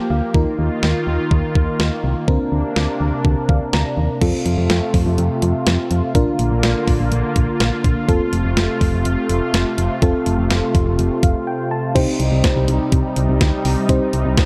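A clean 12-bit digital drum machine sits up front in this melancholic, nocturnal synth-pop piece, its thumpy kick, medium-tuned snare, hi-hat and crash driving a straight 4/4 at 124 BPM. Beneath it, a solid FM bass gives punchy, round notes with a fast attack that decays. A mellow FM electric piano, soft and full-bodied with a chorus effect, carries the accompaniment and plays short fills, while a lush unison pad of detuned sawtooths holds thick, airy chords, coloured by chorus and phaser. The harmony moves from Ebsus2 and Bbadd9/D through F and Bb before settling on Cm, with a brief break at 11.5 seconds. The production is dark and warm, bathed in light reverb, and the recording is cut from a longer piece.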